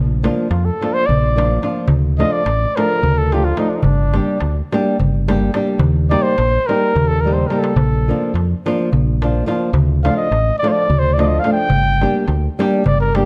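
Exuberant and virtuosic, this Balkan wedding-band fragment from a longer piece drives along in a straight 7/8 at 214 BPM (eighths) in Bb major, cycling through Bb, Dm, Gm and Eb. A mellow, classical-style trumpet takes an up-front solo with light vibrato from 0.5 s, over thumb-plucked acoustic flamenco guitar with audible finger squeak, a dark, round fingered electric bass, and a crisp metal-shell darbuka played with soft hands that breaks into a fill at 7.1 s. Close, detailed microphones place the parts in a moderate recital-hall reverb, with some lossy compression artefacts in the sound.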